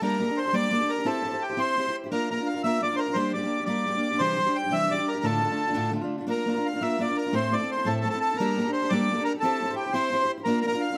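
A 6/8 Celtic jig at 115 BPM in dotted quarters with a straight feel drives this spirited, dark and lively Celtic folk passage, cut from a longer piece and tuned to A4 = 442 Hz. A reedy, mid-forward accordion carries the melody up front between G4 and G5, touched with plate reverb, while a full-bodied fingerpicked dreadnought steel-string guitar supplies accompaniment from D2 to C5, both playing throughout the 11 seconds. The same section is heard twice in a moderate studio room, the harmony moving through shadowy changes like Gmadd9, C, Bb, Gm, Dm and Am.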